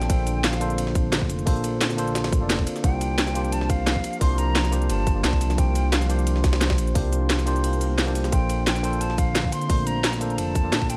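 A hollow, close-miked flute briefly opens this dreamy liquid drum and bass excerpt over a clean electric piano with dub echo, an ethereal detuned pad, a smooth gliding bass with portamento, a cracking drum kit with crisp hats and a tight, up-front electronic kick, while a gritty, pitched-up sampler kit sits high-pass filtered in the background; the flute returns with vibrato and digital delay at 2.8 seconds, and the kick drops out from 7.6 to 8.3 seconds as a very quiet swell sounds.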